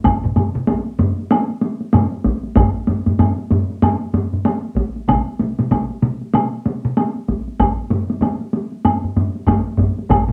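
This is a ceremonial, powerful piece of Japanese traditional taiko drumming, heard as a short cut from a longer performance in 4/4 with a swung sixteenth-note feel. From the first moment, a solo taiko part struck with heavy sticks sits up front, its vintage, band-limited tone set slightly louder than the rest. Around it, several taiko ensemble parts join almost at once and play throughout, one carrying a live-room ambience while the others sound closer and tighter in a small room. A woodblock adds a woody click in a small room that runs the full length alongside the drums. The whole performance sits in moderate studio reverb, and the cassette home recording gives it a homespun, slightly worn character.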